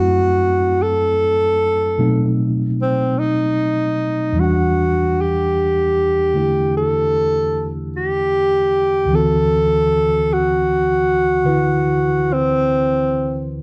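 A clear alto saxophone carries the melody up front throughout this short jazz fragment, its scooped notes sung in a solo jazz style between C4 and A4. A tine electric piano accompanies it for the whole 13.6 seconds, sounding worn and slightly out of tune yet clean, heard through built-in speakers and also placed up front, its range stretching from D2 to F#5. The tempo is a slow 51 BPM in 4/4 with a gentle swing on the eighth notes, and the late-night, intimate mood is shaped by a progression that moves from F#m7b5 to B7b9 at 2.0 seconds, Em9 at 4.4 seconds and D9 at 9.1 seconds. Both instruments carry the soft grain of cassette tape, fitting a home recording with light reverb and studio ambience, tuned to A4 = 439 Hz. Cut from a longer piece, it feels like a private moment overheard after hours.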